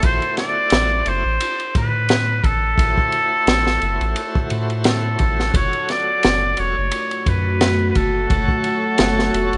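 A crunchy breakbeat kit sets a swung 87 BPM groove in 4/4, its punchy kick, high-tuned snare and dark ride cymbal sounding saturated and gritty with a rolled-off top, placed up front in a small room. This smoky, hypnotic trip hop excerpt rests on a soft, round dub sub bass, while a bright tonewheel organ, lightly overdriven and turning through a slow rotary speaker with tremolo and tape echo, fills in the harmony beneath. Over it a trumpet with a straight mute carries the melody in a nasal, breathy jazz voice, with light vibrato, scooped notes and a tape echo that lends it a distant, roomy air. The harmony moves from Am6 to F#m at 5.5 seconds, and at 6.7 seconds a deep, moody pad enters with slow-attack sustained chords softened by chorus and reverb. The whole has the rough, dull-topped character of a home demo.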